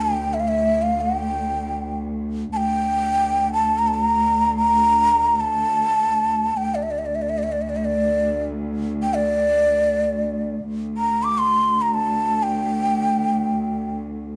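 This melancholic, hypnotic piece in the Turkish makam ensemble tradition is cut from a longer work. An end-blown reed-cane ney carries the melody from 0.0 to 14.0 seconds, ranging from D5 to D6 with a breathy, hollow tone, vibrato and tongued notes. The ney sits up front, with lifted highs and a plate reverb around it. Beneath it, a muted studio cello section holds a bowed drone on D2 until 14.4 seconds. Played con sordino with vibrato, the cellos sound dark and veiled, close and up front, though lower in level than the ney. A moderate studio reverb surrounds the ensemble, and the music repeats its opening section from 10.7 seconds.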